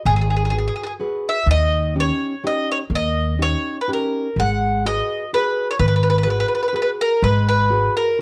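A home cassette recording with a moderate small-room ambience frames this short, wistful piece cut from a longer Italian folk serenade. In G# minor at 126 BPM in 3/4, it moves with a lightly swung, rubato lilt that feels passionate. Up front, the mandolin carries the melody with a picked, double-string tone that is woody and warm, its plate reverb and cassette-tape colour giving it a soft, nostalgic glow. Beneath it, the nylon-string guitar fingerpicks a dark, full-bodied classical accompaniment, sitting a little further back in the mix. The upright bass is also up front, played pizzicato on steel strings with a thumpy, woody presence, and it stops at 7.9 seconds while the other two ring on to 8.2 seconds. The harmony sways from G#m7 to D#7 at 1.5 seconds and back to G#m7 at 4.4 seconds, giving the passage a gently yearning feel.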